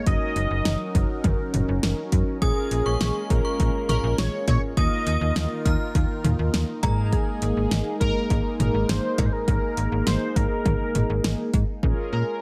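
Cool and driving, this synth-pop excerpt at 102 BPM rides a deep house drum kit with a deep kick, fat snare, cowbell, hi-hat and toms up front beside a snappy, metallic slap-like FM bass, while a bold, retro octave-doubled lead with vibrato and tape echo carries the melody over round, dark synth brass and a swirling phased analog pad in the background, and a chiming, inharmonic synth chime rings out as a second line from 2.4 to 6.9 seconds, all set in digital ambience over chords moving from Bbm7 through Ebsus2 to Absus2.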